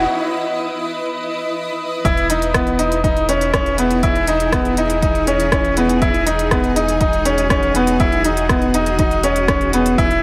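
A moderate concert-hall reverb surrounds this hopeful, luminous piece of piano and strings electronica, cut from a longer track. It opens with a build-up and break in which a cloudy, evolving granular pad holds sustained chords over a round, deep analog bass, both pumping under sidechain compression, with the pad carrying its own built-in reverb. At 2.0 seconds the drop arrives as the harmony moves to Emaj7, and a brilliant baby grand piano enters up front with a riff treated with tape echo and long sustain. A punchy, layered electronic kick drum joins at the same moment, and a deep house kit adds smooth hi-hats and a rim click from 2.1 seconds, with high-pass filtering on its hats, snare and room. Both drum parts have a produced sound re-recorded in a small room, giving the straight 4/4 groove a close, compact feel beneath the hall.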